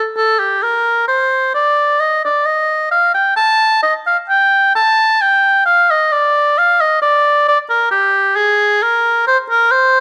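A lone oboe opens the recording, its warm, classical tone placed up front in a close, detailed sound with light reverb. This is a baroque-style fantasia in G minor for unaccompanied oboe, grave yet flowing in mood. The pulse sits around 66 BPM in 4/4, but the rubato feel keeps the phrasing elastic. The line moves between G4 and A5, with the oboe playing solo for the full 10 seconds of this fragment cut from a longer piece. The intimate miking brings out fine detail in the reed's voice.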